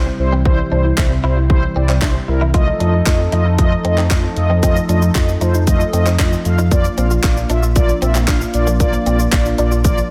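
This euphoric, summery dance-pop clip opens with round, detuned synth brass, a smooth sawtooth pad with tremolo, a deep sine sub bass and a bright, clean electric guitar riff recorded direct, while the brass, pad and bass breathe with sidechain pumping. A hollow, bouncy square-wave pluck spins arpeggios through analog delay in the background, and at 0.5 s a punchy, up-front house kit joins with a cracking snare, handclaps, hi-hat and shaker. Under light reverb, the chords move from C to F7 to Bb.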